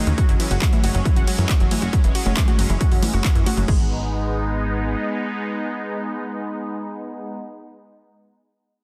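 An overdriven, up-front electronic kick drives this short excerpt of driving, emotional uplifting trance at 137 BPM in G# minor, joined by an overdriven techno kit of congas, handclaps, hi-hat, ride and crash through the opening drop over an F#sus2 chord. A punchy, funky analog bass with a fast filter pluck, a round, warbling vintage pluck playing detuned arpeggios with chorus and delay, and an evolving supersaw swell of soft-attack sustained chords all pump against the kick. After the drums stop at 3.8 seconds, the supersaw carries on with the bass over G#m, set in light digital reverb within a dense, heavily limited modern master.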